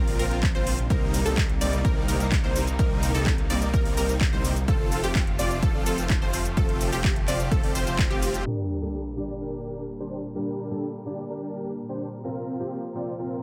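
A straight 4/4 house pulse at 127 BPM drives this powerful, emotional festival progressive house cut in G minor, with a punchy, overdriven electronic kick up front and a house kit of handclaps, metallic hats and shaker, while a huge, thick supersaw riff, a wave-folded unison pluck arpeggio and a chorused, mellow detuned saw bass all pump with sidechain under the drop. Behind them a clear, bowed studio string section holds sustained chords with vintage sampler grit, moving from Bbsus2 through Cm7 and F to Gm. At 8.5 seconds the drums, bass and pluck give way to an up-front sub drop impact, a filter sweep on the supersaw, and a brilliant, picked steel-string acoustic guitar with finger squeak and delay in the background.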